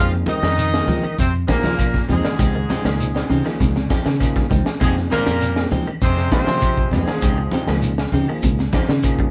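Recorded live by a band in one small, moderately reverberant room, this intense, defiant afrobeat excerpt in F minor at 99 BPM pairs a tight, punchy horn section melody in octaves with a brilliant trombone section line and, from 4.8 seconds, a raspy, very quiet tenor saxophone, over a barky, overdriven tine electric piano, bright clean electric guitar arpeggios, dark semi-hollow guitar stabs, a round fingered bass, an up-front, gritty breakbeat kit with a high-tuned snare, and thick-skinned congas, grainy shekere and distant woody claves, moving between Fm9 and Dbmaj9#11.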